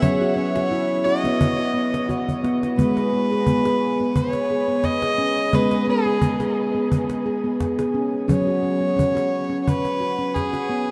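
Drenched in a huge ambient reverb that opens a vast, echoing space, this meditative, hypnotic world piece of tuned percussion moves at 87 BPM with a light swing on the sixteenths, as a ringing stainless-steel handpan sits up front with fingertip arpeggios bathed in shimmer reverb, a single bowed fiddle with a reedy gut-string tone carries the close melody through shimmer reverb and delay, and a woody, compressed, saturated cajon with faint snares, played with soft hands, drops a fill at 2.1 s while the harmony moves from F#5 through B toward G#m.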